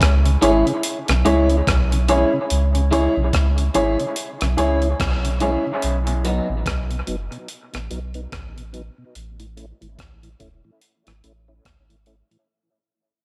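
A swung 72 BPM dub reggae groove in 4/4 rides on a compressed, gritty sampler-style breakbeat kit of thumpy kick, hi-hat and rim click, beneath a round, up-front sub bass in C# minor. A mellow tonewheel organ in the background with slow rotary speaker and chorus vibrato, a slightly broken-up picked electric guitar with lush chorus, and a dark, woody, slightly detuned upright piano playing stabs each sit in dub echo, all within an echo-chamber reverb, as the chords move from C#m through B to A. The piano drops out at 5.6 s and the guitar at 6.5 s as a break opens from 5.8 s, leaving bass, drums and organ to carry this deep, spacious, fading excerpt.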